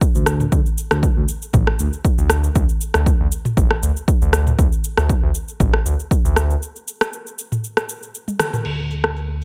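Afro house at 118 BPM with a light swing, this hypnotic, spiritual excerpt is built on a punchy, overdriven electronic kick and an afro-pop drum kit whose crash, rim click, shaker and toms are softened by low-pass filtering. A smooth synth bass blending sawtooth and square tones, with a moving notch and sidechain pumping, holds between A1 and D2 from 0.2 seconds. The kick drops out at 6.2 seconds, ahead of a break at 6.6 seconds in a dry, up-front mix, and a short drum fill with a band accent at 8.4 seconds closes the passage.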